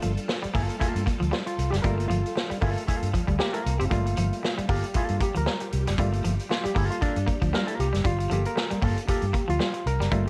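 This short funk cut has a dark, warm studio sound with light reverb, and its mood is hypnotic and driving at 116 BPM in 4/4, swung on the sixteenths in G minor over a single Gm9 chord. Up front, a saturated, gritty vintage drum kit with a punchy kick, a medium-tuned snare, hi-hat and a rolled-off top sits beside a round, foam-muted, amped fingered bass. An auto-wah clav takes the solo throughout, its mellow, stringy stabs coming through a combo amp. An electric guitar at the edge of break-up plays a slightly broken-up, twangy picked riff, while a second guitar, bright and clean through an envelope filter, adds accompaniment from 0.5 to 9.2 seconds. Beneath them, a very quiet phased string machine sustains swirling sawtooth chords with a slow attack and ensemble chorus.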